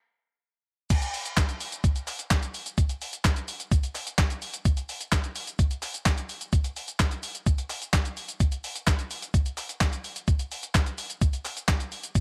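Confident yet bittersweet, this short pop fragment in a straight 4/4 feel rides entirely on rhythm. After a brief break, the drop arrives at 0.9 seconds, when a clean 12-bit digital drum machine enters and carries the track until 12.2 seconds. Its sampler-style electronic kit brings a thumpy kick, a medium-tuned snare, hi-hat, shaker, handclaps and crash cymbal, re-recorded in a small room and placed up front in the mix. From 1.4 seconds, a very quiet group handclap adds a human, crisp, acoustic texture, close and dry, beneath the machine. The sound stays intimate and direct, with little reverb around the parts.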